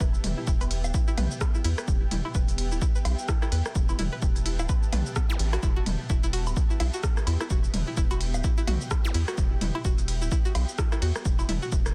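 Minimal techno at 128 BPM in E minor with a 16th-note swing, this clinical, hypnotic excerpt rides a punchy, up-front analog kick and a rubbery, hollow square bass that pumps against it, while a twangy, string-like resonator pluck riff with chorus and dub echo, a cloudy granular pad that evolves and pumps, clicky hats with a ride, rim and shaker from a small-room kit, a tape-warm layered set of rim clicks, toms and woodblock with dub echo from 0.2 s, and brief electronic zaps in the background at 5.3 and 9.0 s all sit inside a dry, dense, heavily limited mix.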